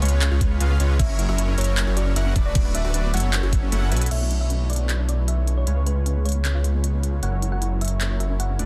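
Lush and bittersweet, this future bass excerpt at 154 BPM in B minor rides a half-time feel. A thick, detuned saw bass and a knocking, overdriven electronic kick sit up front, the kick dropping out at 3.6 s. A trap kit adds crisp hats, handclaps and crash with a drum fill at 3.9 s. A fat, nasal polysynth riff takes on a filter sweep from 4.1 s. A round, tine-like thumb-piano pluck melody and a punchy phased unison pluck arpeggio sit in the background, both with dub echo. The bass, polysynth and both plucks pump to the sidechain, and an ethereal, very quiet pad enters at 5.3 s over chords moving from C#7 to Bm11, all in a dense, heavily limited modern master.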